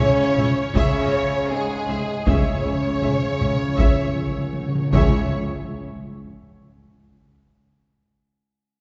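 A taiko ensemble struck with heavy sticks opens this cinematic, epic orchestral film cue together with the full orchestra, setting a relentless, dramatic mood in a steady, straight four. Bowed violin sections carry a lush, vibrato-laden melody and second line in the background, while a smooth viola section fills in the accompaniment and double basses and a very quiet cello section hold a deep bass note beneath them. Dark French horns and trombones sustain chords from further back, their dark, roomy tone giving the harmony weight. At 2.3 seconds a close, dry timpani played with hard mallets adds an articulate fill under the ensemble. The violins, violas, brass and timpani fall away at 5.3 seconds and the low strings a moment later, leaving the taiko drums ringing on until 6.4 seconds in a reverberant concert hall, in what is clearly a fragment cut from a longer piece.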